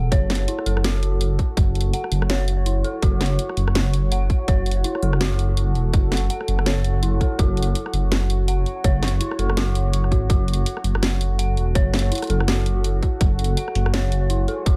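Tense and dark, this half-time drum and bass excerpt sits on a single F#madd9 chord, with a hard-clipped, overdriven electronic kick placed up front and a layered kit of hi-hat, rim click and a cracking snare, both kit and kick carrying small-room ambience. A rumbling, beating detuned saw bass holds the low end, while a deep, moody ambient pad sustains chords through chorus, built-in reverb and sidechain pumping. Over them, an eerie, inharmonic FM synth bell plays arpeggios roughened by 12-bit sampler grit and analog delay in an echo-heavy mix.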